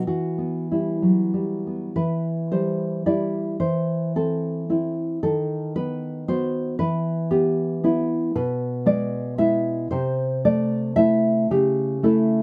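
A romantic solo classical guitar piece in 3/4, cut from a longer work, moves with intimate, passionate rubato between 91 and 118 BPM, its dark, full-bodied, thumb-plucked nylon-string guitar sitting up front in a close, detailed, nearly dry recording as the harmony turns from E minor toward A minor at 8.4 s.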